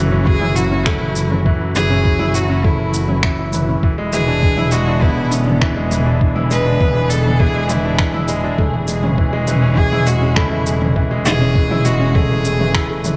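A light reverb gives this moving, melancholic piano-and-strings electronica a soft, roomy sheen, with a polished grand piano up front playing a riff through a delay while a muted, veiled studio string section holds lush sustained chords far in the background. A woody, distant solo cello sings the bowed melody with vibrato, and a con sordino double bass section supplies a smooth, sidechain-pumped bass beneath the F#m7, E7 and Amaj7/E changes. At a straight 101 BPM in 4/4, a compressed, pitched-down kick thumps in from 0.3 seconds, and a minimal electronic click kit of finger snaps, shaker and toms, re-recorded in a large room, joins at 0.4 seconds in this brief cut from a longer piece.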